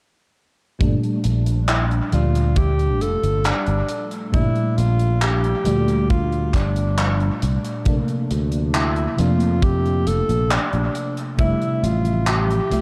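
Steeped in cassette-tape haze and echo-heavy small-room ambience, this melancholic vaporwave excerpt drifts over Gm9, Bbmaj9 and Fmaj7 chords as a lush, detuned FM electric piano with a soft pad layer glows through phaser, chorus, 12-bit sampler grit and dub echo, an up-front fretless electric bass hums with tube saturation, a tight, airy kick and a polished metal drum kit of handclaps and hi-hat with dub echo keep time, and from 1.7 seconds a breathy, subtone alto saxophone sings a jazz-style solo with light vibrato and tape echo.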